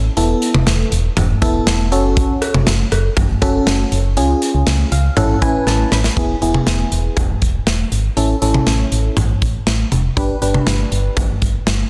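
Wistful yet upbeat synth-pop in a straight 4/4, cut from a longer piece, pairs a round, dark FM bass with an up-front, glassy, bell-like FM electric piano coloured by chorus and phaser, while a studio drum kit with a punchy kick, cowbell, hi-hat, snare and toms drives the groove, and a piano fill from 4.7 seconds plus a drum fill at 5.7 seconds lead into a new section at 6.2 seconds, set in a dense, heavily limited master with light small-room reverb.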